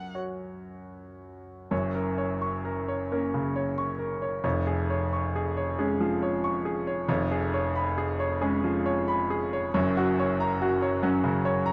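A bright baby grand piano opens this melancholic, solemn classical excerpt in F# major, moving at a slow 45 BPM in dotted quarters in 6/8 with uneven, rubato timing. Its brilliant, natural tone and long sustain sit up front as it plays accompaniment across a span from E#1 to C#6, settling on F# at 1.7 s before moving through C#/E# and C#7/E# and returning to F# at 9.8 s. Light reverb surrounds the piano in a dark, warm production.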